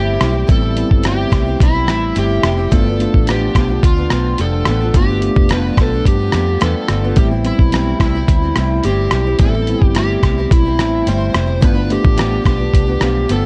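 This wistful, lonely slice of indie and bedroom pop opens with an overdriven slide guitar carrying the melody, set over a mellow tine electric piano, a picked steel-string acoustic guitar and a muted fingered electric bass, with a dusty soul sampler-style drum kit entering at 0.2 seconds. At a straight 108 BPM in 4/4 and in A minor, the harmony moves from Am7 to G7 and back to Am7 at 7.2 seconds. The dark, fingered slide line sits in a lush chorus and analog delay, while the boxy parlour acoustic carries a subtle chorus and vibrato effect over its fresh strings. The electric piano stays clean and in the background, sounding as if through built-in speakers, and the round, punchy, foam-muted bass anchors the low end. Up front, the compressed drums bring a thumpy kick, hi-hat and rim click with vintage 12-bit grit, all kept dry with little reverb as the passage is cut from a longer piece.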